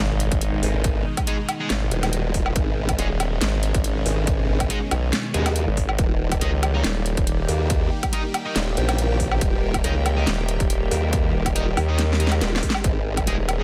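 A half-time 4/4 groove at 140 BPM with a light 16th-note swing drives this aggressive, chaotic excerpt of heavy wobble dubstep in G# harmonic minor, moving from G#m to D# at 6.0 seconds. A distorted electronic kick and an up-front kit of huge snare, metallic hats and woodblock sit under two up-front formant-sweep wobble basses, one pulse-wave and one sawtooth, both chorused and overdriven. Behind them a lush, detuned supersaw pad pumps through a phaser, picked fuzz guitar stabs carry 12-bit grit and dub echo, a cloudy granular pad enters at 8.0 seconds, and a barely audible sub drop frames an opening impact and a drum fill near 12.0 seconds, all in a digital ambience.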